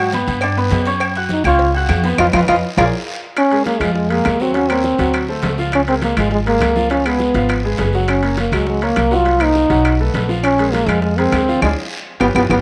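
A mellow, vibrato-laden trombone opens this sultry, sophisticated Afro-Cuban jazz excerpt up front over a warm baby grand piano with short sustain and a growly, thumpy pizzicato upright bass, while very quiet bright congas, round low-tuned cowbell and bongos, ringing metal-shelled timbales and agogo bells, woody claves from 0.4 s and a raspy, distant guiro fill out the percussion, with a drum fill and band accent arriving at 2.2 s and again near the close.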